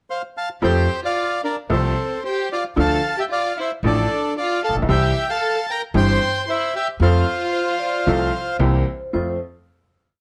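A marcato tango rhythm in two drives this short, complete piece in 4/4 at 113 BPM, played with a rubato feel in F major and a playful, nostalgic mood. The woody upright bass, plucked on steel strings, marks that tango rhythm alongside the bright, brilliant upright piano, which sits up front, and together they move through F, Dm, C and C7 before settling on F. The reedy, dark bandoneon enters with the pickup at 0.1 s, close and full, carrying a motif-based melody in period phrases that is partly doubled in thirds and touched with plate reverb. Beneath it, a chamber violin section adds a smooth, even second line, bowed with vibrato and doubled in octaves. From 7.5 s a metallic, ringing vibraphone with medium hard mallets and a medium motor vibrato answers phrases in the melody's rests from the background, and the piece closes on a final F chord at 9.1 s, heard in a moderate studio reverb.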